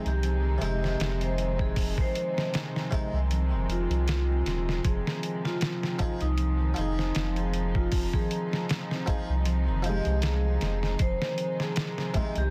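Melancholic and cinematic, this trip hop excerpt moves at 78 BPM in F minor with a lightly swung 16th-note feel, its harmony shifting from Ab/F to Fm7 at 4.8 seconds. A dusty, sampler-style drum kit sits up front with a thumpy kick, fat snare and hi-hat, gritty and compressed, while a deep, round sine sub bass anchors the low end with fast-attack, sustained notes. A vibraphone played with medium mallets carries the melody, its metallic, airy ring trailed by tape echo. Beneath it, a plucked Flemish-style harpsichord accompanies with harmonic tremolo and tape echo, a reedy studio string section holds bowed chords with light vibrato and 12-bit sampler grit, and a fingerpicked concert harp sits in the background with arpeggios. A very quiet, tense, string-like drone on C4 adds a sawtooth and ring-modulated texture with slow attack and long release. The mix is dry, dense and heavily limited, with vinyl crackle over the top.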